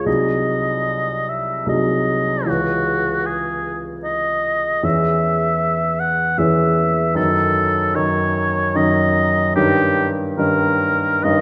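A solo oboe carries the melody from the very start, its warm tone shaded with light vibrato and a smooth top as it sings between F#4 and F#5 in a classical style. This is an elegiac, solemn romantic duo in C# minor, moving in a rubato 3/4 at around 75 BPM and tuned to A4 = 439 Hz. A clear concert grand piano accompanies throughout, sitting up front alongside the oboe with a deep bass and an open sound reaching from B#1 up to G#4. The harmony begins on G#7/B# at 0.1 seconds, settles into C#m and C#m/E, then darkens through D#m7b5/F# before resting on D#7/G near 9.6 seconds. Both instruments are bathed in the generous reverb of a recital hall, and the passage, cut from a longer piece, lasts about 11.4 seconds.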